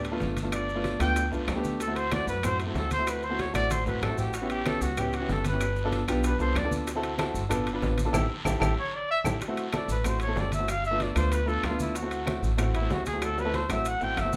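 A danceable, sunny stretch of Afro-Cuban jazz in D mixolydian at 189 BPM opens with a soft-attack, roomy trumpet soloing up front over a warm baby grand piano with short sustain and a dark, thumpy pizzicato upright bass on gut strings, pausing near 6.7 seconds before returning at 8.8 seconds. Behind them sit low-tuned congas with soft hands, ringing metal-shell timbales, very quiet vintage-sounding bongos, grainy maracas, a raspy, distant guiro and compressed, saturated claves. Drum fills and a band accent punctuate the dominant-seventh harmony, with an Am13 arriving at 9.4 seconds in this fragment of a longer piece, all set in a moderate large-studio reverb.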